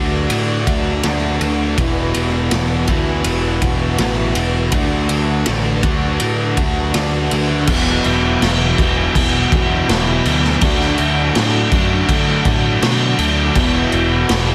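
A blissful, hazy slice of shoegaze and dream pop rock opens on three layered guitar riffs, a fuzzy picked bass and a deep, dark ambient pad, with a raw garage drum kit joining at 0.3 seconds. The straight 4/4 groove sits at 81 BPM, moving between D and Esus2 chords and shifting into a second section at 7.7 seconds. Sitting up front, the kit has a punchy kick, a medium-tuned snare, crash and ride cymbals, and a gritty, saturated, small-room sound with a rolled-off top. The bass is punchy and overdriven, with a fuzz edge. Behind it, a crunchy overdriven guitar with ensemble chorus, a slightly broken-up lo-fi guitar through a small old amp with reverse reverb, and a bright, tight, double-tracked distorted guitar blend into a dense haze. Underneath it all, the very quiet, moody pad holds slow-attack sustained chords of detuned sawtooth and sine with a sub octave, in a light studio reverb and a heavily limited modern master.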